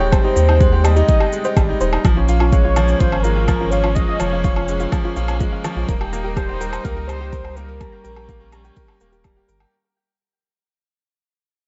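Light reverb and a digital ambience, with a rolled-off top end, frame this tender, luminous piano-and-strings electronica at 125 BPM, which plays as a drop over Abmaj7, Bbm7 and Eb chords and begins fading out at 2.0 seconds. A velvety, chorused synth lead with vibrato carries the melody over a brilliant, woody upright piano riff, while a round sine sub bass and a deep, layered electronic kick sit up front. In the background, a distant bowed string quartet holds sustained chords and a soft, nasal pluck plays chorused, delayed arpeggios; both pump with the sidechain alongside the bass, and an overdriven shaker and woodblock complete the beat.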